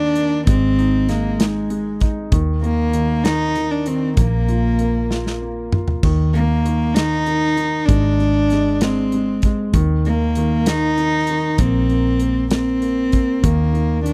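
A single cello carries the melody up front, played sul tasto with a soft attack, an airy bow and light vibrato, its intimate tone touched by tape echo. This is a heartfelt, romantic pop ballad in 6/8, moving slowly at 65 BPM counted in dotted quarters, cut from a longer piece. A baby grand piano supplies open, warm accompaniment, while a vintage foam-muted fingered electric bass adds a dark, round and punchy low end through an amp. A modern acoustic drum kit enters at 0.2 seconds with a punchy kick, medium-tuned snare, bright cymbals and a polished, airy small-room sound, and plays a fill from 5.1 to 6.0 seconds. The harmony cycles through Ab, Eb5, Bb5 and Bbsus2, all captured in a dry, close 1970s-style studio recording.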